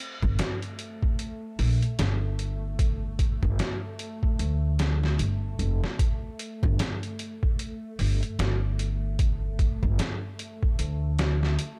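A dark, warm digital ambience surrounds this short excerpt of smoky trip hop, which sits at 75 BPM in 4/4 with a 16th-note swing and hangs on a single Gsus2 chord, tuned slightly sharp to A4 = 441 Hz. A string-like drone on A3 opens at 0.0 s, faint and tense, its sawtooth unison tone carrying a noise layer, a moving notch, vibrato and its own reverb, with a slow attack and long release. At 0.2 s an up-front pizzicato upright bass enters, its woody, bright steel strings moving between F1 and D2. A sampler-style drum kit comes in at the same moment, compressed and pitched down, with a gritty edge, a thumpy kick, a medium-tuned snare and hi-hat, set in a small room and placed up front. The result is a brooding groove fragment taken from a longer piece.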